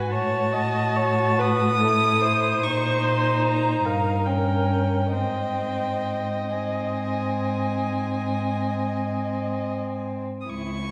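Yearning and melancholic, this slow romantic movement for string quartet drifts in 12/8 at roughly 43-52 beats per minute in dotted quarters, its pulse bending with rubato. All four players bow with mutes on, giving the ensemble a dark, veiled color. The first violin carries the melody high above, its vibrato and portamento lending the line an aching quality, while the second violin, sounding close, plays a lower second line. The viola supplies accompaniment with only light vibrato before dropping out at 9.8 seconds, and the cello anchors the bass up front. The harmony moves from F#m/A through D#7/A# toward G#, and a reverberant church or concert hall acoustic, with a decay of about 2.4 seconds, surrounds this brief passage cut from a longer piece.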